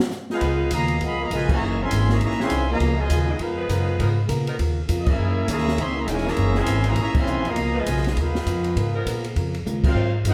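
Heard from further back in a reverberant large studio, this joyful, swinging big band passage at 202 BPM in Db major sets a bright trumpet section on the melody over a soft-attack, vintage trombone section's second line, with clear saxophone chords and a picked acoustic guitar with finger squeak in the background, a woody pizzicato upright bass, and an open jazz kit with dark cymbals and a boomy kick, punctuated by band accents at 1.5, 5.0 and 7.1 seconds and a closing drum fill.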